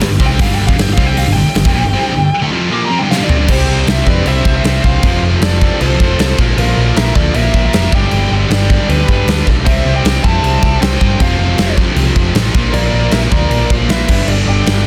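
Hard rock at 156 BPM, powerful and swaggering and cut from a longer piece: an up-front acoustic kit with a tight kick and medium-tuned snare in a bright stone room and a round, punchy hollow-body picked bass play alongside three picked rhythm guitars (two distorted high-gain, one overdriven) playing a riff in the background. Meanwhile, a very quiet, gritty tonewheel organ with key click and slow rotary holds sustained chords, and a dark high-gain lead guitar with digital delay solos through the opening 3.5 seconds, capped by a drum fill from 3.1 seconds. The lead then carries on with the melody as a biting overdriven second lead joins at 3.5 seconds, all in a dense, heavily limited mix with little reverb.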